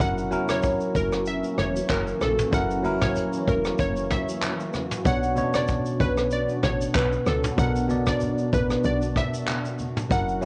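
Sultry and hypnotic, this short afrobeats excerpt with a gentle swing pairs a glassy, detuned wavetable pluck melody and a bell-like tine electric piano with phaser over a blurred granular pad pumping softly in the background, a woody log drum bass, a vintage brush kit with punchy kick, handclaps, rim click, shaker and toms carrying 12-bit sampler grit, and very quiet low-tuned congas arriving at 0.3 s, all softened by cassette tape and a small room.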